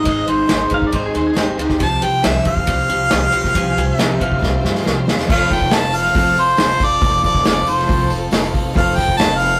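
Folk rock with a heartland rock drive, this short excerpt from a longer piece moves at 138 BPM in a straight 4/4 in F major, with an open-road, warm mood. A clear, up-front harmonica carries the melody with light vibrato and a smooth top, over a bright picked steel-string acoustic guitar, a twangy, slightly broken-up electric guitar riff from a small old amp, and a very quiet, piping tonewheel organ holding sustained chords through a fast rotary speaker with key click. An upright bass plucks a woody line on steel strings, while an airy, polished unplugged drum kit played with bundle sticks sits up front with a punchy kick, a medium-tuned snare, hi-hat, ride and crash. A clean pedal steel guitar adds a compressed, slide-played second line with volume swells from 0.7 to 5.1 seconds, and the harmony moves from Ab to Csus4 before a drum fill leads into an F chord at 5.3 seconds. There a very quiet, intimate upright piano with audible action noise and a jingly tambourine enter, while the whole rough rehearsal-room recording is set in moderate studio reverb.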